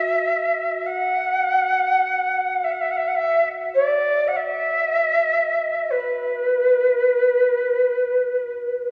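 Haunting and meditative, this short world excerpt in free time features a lone Native American-style cedar flute carrying the melody from 0.0 to 8.9 s, its pure, woody tone with vibrato, tongued chiff and tape echo sitting up front yet distant within a wet church reverb and the warbling pitch drift of worn cassette tape.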